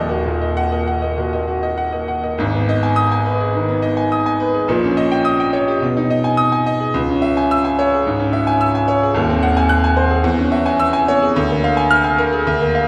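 A wet recital-hall reverb with a 1.8-second tail surrounds this short cut from a longer classical work, heard from further back in the room even as the solo grand piano sits up front. The piano has a brilliant, vintage character with long sustain, ranging from Eb1 to F#6 in a stormy, passionate virtuoso study in G# minor, tuned to A4 = 443 Hz. The tempo sits around 107 BPM in 4/4, but the beats are uneven and the rubato lets the pulse stretch and give. A brief opening on E-flat minor gives way at 2.4 seconds to a longer passage that moves through G# minor, D#7 over A#, C# minor and G#7 over D#. The harmony closes on Bb7 over D at 11.4 seconds, and the piece is cut off at 12.9 seconds.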